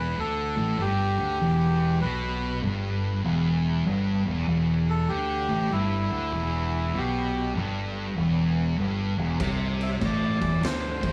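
Stoner and doom metal at 98 BPM in 4/4, with a swung eighth-note feel in E minor, this heavy, brooding excerpt is cut from a longer piece. A reedy, breathy melodica carries the melody from the start, close-miked and treated with tape echo. Beneath it, two thick fuzz guitars grind out a dark, distorted riff in the low register, one of them placed up front. A fingered electric bass with overdrive adds a warm low end, while the harmony rests on E minor before shifting to a C power chord at 9.4 seconds. At that point an oversized, low-tuned drum kit crashes in with a boomy kick, fat snare and dark cymbals. The whole band sounds as if it is playing live in one room, wrapped in a moderate studio reverb.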